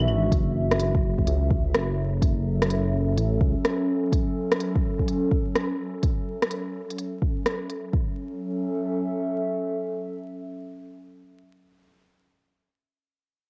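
A warbling, nostalgic pad of detuned chords sits up front from the start through 11.2 seconds, its lo-fi cassette character, chorus and sidechain pumping giving this melancholic, nocturnal future garage cut in F# minor a hazy glow over an F#m7 chord. A rumbling, detuned saw bass with saturated, sidechain-pumped weight drops out at 3.5 seconds, while a deep electronic kick entering at 0.3 seconds and a tape-tinged kit of claves, smooth hats and rim clicks drive a swung 126 BPM groove. Spring reverb, digital ambience and vinyl crackle wrap the home-cassette sound.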